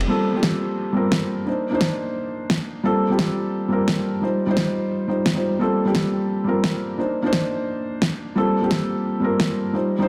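Dreamy and lush, this short cut of liquid drum and bass at 174 BPM in G minor sets a soft, dark felt-muted upright piano with audible action noise and digital delay over Gm11, Cm9 and Eb69 chords, while a fat, overdriven electronic snare enters at 0.4 seconds, both up front in a wet concert-hall reverb with a dense, heavily limited modern master.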